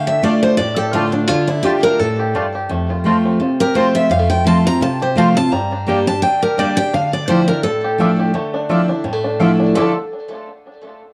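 Driving and haunting, this bluegrass excerpt in D minor swings at 170 BPM as a bright, up-front dreadnought guitar carries the melody through plate reverb and tape echo, shadowed by a very quiet, nasal slide resonator guitar, over a full-bodied jumbo guitar accompaniment with audible finger squeak, twangy banjo arpeggios bathed in tape echo and woody mandolin stabs entering at 0.2 seconds, all moving from Dm through F and Gm to Dmadd9 in a wet room on worn, warbling cassette tape.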